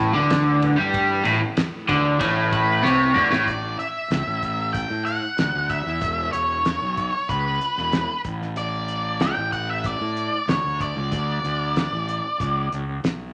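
Kaleidoscopic and hypnotic, this straight-feel psychedelic rock passage cut from a longer piece opens with a double-tracked, phaser-washed overdriven guitar riff over shimmering, chorused string-machine violins and very quiet, ringing low-tuned congas that all fall away by 3.5 seconds after a drum fill, leaving the round fuzz bass and a cloth-damped, thuddy kit with a fat snare and dark cymbals to carry on beneath an up-front, octave-fuzz lead guitar melody that enters at 2.5 seconds, all in a moderate large-studio reverb.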